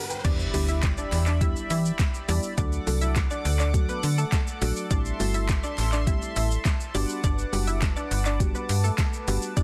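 A dense, heavily limited modern mix in a digital ambience opens this confident, driving dance-pop excerpt in E minor at 103 BPM, where a background riser gives way at 0.2 s to a drop built on an up-front, tape-warm electronic R&B kit with a fat snare, smooth hats, crash, handclaps and shaker, and a snappy slap-like FM bass with a metallic attack. A hollow, bouncy square-wave pluck with tape echo carries the melody over a dark, round pluck and a shimmering, retro pulse-width pad, all three pumping against the kick, while a crisp, distant group handclap sits very quietly in a large room. The chords move from Em7 through D and Am7 to Gmaj7.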